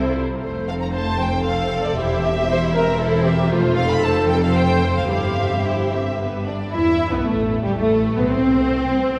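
From the first moment, a string orchestra plays a quick classical-period movement in 3/4 at 116 BPM, spirited and graceful, with a rubato feel. The violins carry the melody with a soft attack, expressive vibrato and a smooth top, while a second, more focused violin line moves beneath it. Violas supply a rich, bowed accompaniment. Cellos provide an even bass, and double basses add lush depth below them. The harmony moves from F through C/E and back to F, then C/G, before a G69 chord opens a new section at 6.7 seconds, and the chords drop away at 8.3 seconds. A church reverb with a 3.4-second decay gives the ensemble a spacious, hall-like bloom, and the passage is cut from a longer piece.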